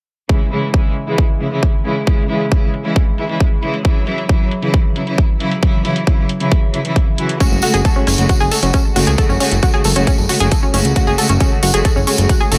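Light reverb and a small-room ambience frame this euphoric, soaring uplifting trance excerpt, a 135 BPM passage in straight 4/4, in C# minor with tuning set slightly below standard at A4 = 438 Hz. From 0.3 seconds a rich chamber string section holds sustained chords up front, its bowed ensemble tone earthy with light vibrato and a smooth top, pumping under sidechain compression and shaded by a low-pass filter. Beneath it a punchy electronic kick sits forward in the mix beside layered, metallic hi-hats that carry their own low-pass filter, while a filter sweep runs across the drums throughout. At 7.4 seconds the harmony shifts from C#m to F#madd9, and a round, detuned sawtooth pluck enters with bright arpeggios, thickened by lush chorus and tape echo and pumping with the sidechain. Alongside it comes a jingly tambourine that sounds distant, as if in a large room, and a moment later a fat, thick analog bass arrives with a fast attack and decaying notes, also pumping. 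The excerpt plays as a single section until it is cut off at 12.6 seconds.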